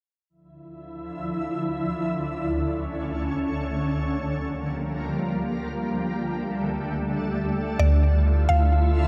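Steeped in echo-chamber reverb and digital ambience, this hazy, ethereal cloud-rap fragment drifts in free time, cut from a longer piece. A shimmering, detuned ambient pad with an octave-up granular sheen carries sustained chords from 0.7 seconds, moving from Dmadd9 through A/D, Gm7/D and Dsus4 before returning to Dmadd9. At 7.8 seconds a woody, mallet-like FM pluck with chorus, phaser and analog delay adds a brief high melody, while a deep, round 808-style bass sits dark and up front beneath it.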